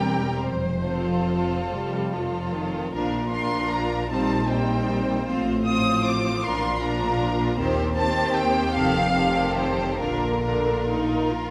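Classical music for string orchestra, this slow romantic movement unfolds in 6/8 with a warm, serene mood and freely breathing rubato. A lush, symphonic violin section carries the melody up front, its sound focused and smooth at the top, while a clear, close second violin section sings a supporting line just beneath it. Rich, even violas fill in the accompaniment, and a cello section with a warm, expressive sound joins a rich, focused double bass section to anchor the bass. Every section is bowed with vibrato and plays throughout this short passage, the melody violins falling silent at 11.3 s just before the others. A moderate concert hall reverb wraps the ensemble, and the gently flowing harmony comes to rest on a Bb chord at 10.0 s before the passage is cut from the longer piece.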